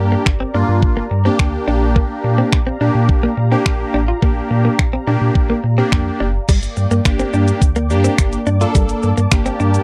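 A straight 4/4 dance-pop groove comes from a clean, sampler-style 12-bit drum machine, entering at 0.3 s with a thumpy kick, finger snaps, hi-hat, shaker and crash, sitting up front beside a deep, full sub bass doubled at the octave. A fat, nasal, detuned sawtooth polysynth and a smooth, warbling vintage pad with subtle chorus carry the Gm to Bb6 chords, and they pump along with the bass under sidechain compression. A direct-recorded clean electric guitar plays a compressed, picked riff through lush chorus, and the dry, close 1970s-style sound gives this energetic, bittersweet excerpt its bite as the harmony returns to Gm at 6.5 s.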